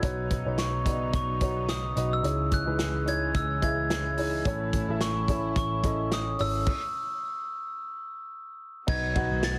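A lightly swung 16th-note groove at 108 BPM in 4/4 drives this anthemic, piano-driven pop clip, with a roomy country drum kit with a punchy kick and a round, foam-muted picked electric bass holding the low end. A dark, woody, slightly detuned upright piano carries the accompaniment under soft, floating sul tasto strings in the background, while a bell-like glockenspiel struck with hard plastic mallets enters at 0.6 seconds with a ringing, delayed melody. A stop from 6.7 to 8.9 seconds breaks the phrase before the chords resume on B, and the whole mix has light small-room reverb and a heavily compressed, radio-style sound.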